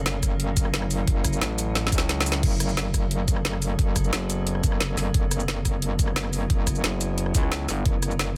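A dense, heavily limited and dry mix carries this mechanical, aggressive dark technical drum and bass cut at 177 BPM in F# minor, where a metallic, chorused wobble bass holds F#1 up front over an overdriven kit of knocking electronic kick, woody snare, bright hats, rim click, shaker and crash with a drum fill at 1.8 s, while a thick, growling FM bass joins from 1.4 s and an eerie, inharmonic ring-modulated drone with gritty 12-bit sampler texture sustains F# minor chords in the background, both drone and wobble bass pumping against the sidechain.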